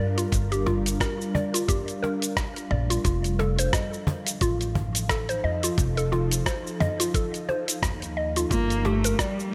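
A lush hall reverb surrounds this mystical, earthy organic downtempo excerpt at 88 BPM with a swung sixteenth feel, where an airy pad with ensemble chorus and sidechain pumping holds sustained chords over Gm7 and F7, a round, warbling FM mallet-like pluck spins arpeggios through chorus and tape echo, a woody pizzicato upright bass sits up front, a gritty sampler-style drum kit of cabasa, hi-hat, rim click and toms joins a thumpy electronic kick and a snappy, soft-handed cajon, and a rich, expressive bowed cello with vibrato and portamento enters at 8.5 seconds.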